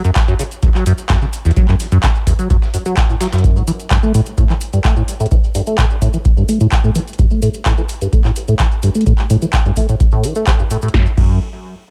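A straight 4/4 pulse at 128 BPM drives this raw acid house excerpt, anchored by a deep, tape-warm electronic kick up front and a dry electro analog drum machine with punchy snare, metallic hats, handclaps and crash, while a grainy, mellow cabasa sits in the background with tape echo. Over it, a squelchy, resonant sawtooth acid bass riff ranges from E2 to A3 under a filter sweep, colored by phaser, tube saturation, analog chorus, tape echo and sidechain pumping. A gritty, overdriven sampler-style soul kit adds very quiet hi-hat and snare from 0.2 to 3.4 s, all within a lightly reverberant, echo-heavy mix.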